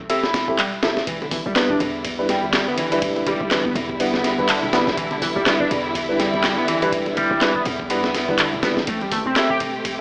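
Gritty and swaggering, this breakbeat excerpt struts along at 123 BPM in 4/4 with a swung sixteenth-note feel, cut from a longer piece and heard through an AM-radio filter with moderate room reverb. A compressed, sampler-style breakbeat kit sits up front with a thumpy kick, medium-tuned snare, hi-hat and ride, joined at 0.6 seconds by layered, tape-warm electronic handclaps. An overdriven synth lead carries a screaming, guitar-like riff colored by phaser, vibrato and dub echo, while a dark, boxy concert grand piano adds mellow stabs that also trail off in dub echo. From 1.1 seconds a lush, woody string section holds sustained chords with a sidechain pump, and from 1.2 seconds low-tuned congas with a thin, bright skin tap softly in the background. Beneath it all, a boomy 808-style bass sits low in the mix as the harmony moves from Am7 to Em7 and back to Am7 near the end.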